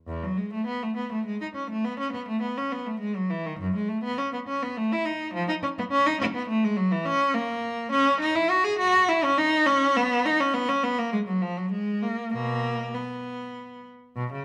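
Classical, baroque-style suite movement for unaccompanied cello, flowing and dance-like in 3/4 at 103 BPM with a rubato feel, settling into B major from 7.0 s. A single bowed cello plays alone from start to finish, its rich, focused tone carrying vibrato and a smooth top as it ranges from E2 to G#4, placed up front. The sound sits in a reverberant stone room whose 1.2-second decay gives the line a resonant halo, and this passage is cut from a longer piece.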